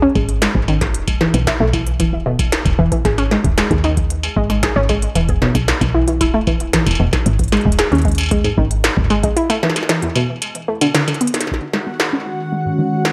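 IDM with a glitchy, eerie mood at 114 BPM in G# minor, opening on a warbling, dusty sawtooth pluck playing arpeggios up front with chorus and tape echo, over a woody, round FM bass that drops out at 9.3 seconds. A deep analog kick sits in the background while an industrial kit with a clanging snare, smooth hats and struck metal stands forward, re-recorded in a large room, with a drum fill at 11.2 seconds. At 11.5 seconds a bubbling, resonant texture of random filter steps arrives and filter sweeps move across the arpeggio, and at 12.1 seconds a nostalgic, detuned lo-fi pad enters on G#m7, all under light digital ambience in this excerpt from a longer piece.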